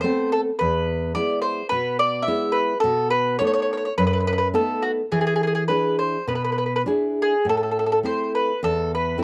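Wistful and passionate, this brief rubato fragment of Italian folk sets a woody, double-strung picked mandolin melody up front over a full-bodied, fingerpicked nylon-string guitar with fresh strings and a deep classical tone, both playing throughout the 9.2 seconds as the harmony moves from Amadd9 through E, B7 and E7 back to Am, all captured in a dry, close 1970s-style studio sound.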